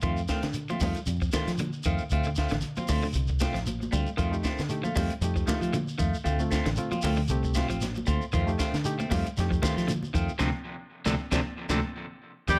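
Driving and hypnotic, this afrobeat excerpt moves at 116 BPM with a light 16th-note swing over alternating F7 and Dm7 chords. A round, foam-muted fingered bass and a compact cocktail drum kit with a punchy kick and high-tuned snare anchor the groove, while ringing, hard-handed congas and a grainy shekere add percussion, a slightly broken-up electric guitar plays arpeggios through spring reverb and analog delay, and a clean electric guitar adds phaser-tinged stabs. A barky, lightly overdriven reed electric piano enters at 4.3 seconds and fills alongside a drum fill during a band accent, before a bright alto saxophone and a raspy, gritty tenor saxophone appear at 12.5 seconds as the clip ends.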